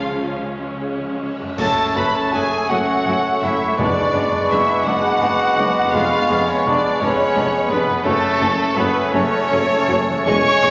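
This slow, elegiac orchestral passage in F# minor opens with a lush, vibrato-rich violin section carrying a yearning melody up front. Beneath it sit a quieter second violin line, an airy flute, mellow clarinet, punchy cor anglais, a rich viola section, cello and double bass sections, sustained French horn chords, ringing harp arpeggios and close, dry timpani. At 1.6 seconds the full band accents the arrival of F# minor as a soft-attacked trumpet adds stabs, bassoon and tuba join, and dark cymbals with concert bass drum sound briefly in the background; the timpani fall away at 4.8 seconds. Cut from a longer piece, the passage moves in a rubato 6/8 at 55 beats per minute through half-diminished and diminished harmonies, bathed in a long concert hall reverb.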